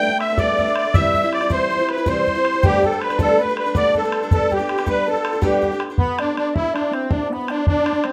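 Celtic folk slip jig in 9/8, rollicking and cheerful, with a shimmering musette accordion up front carrying the melody while a pure, wooden baroque flute and a ringing, thumb-plucked Celtic harp trace second lines in the background. A bright picked archtop guitar sits forward with accompaniment until 6.0 s, when it drops away for the closing phrase, and a boomy, open bodhran drives the pulse from 0.2 s. Moderate studio reverb gives the ensemble a lively room sound in this short cut from a longer piece.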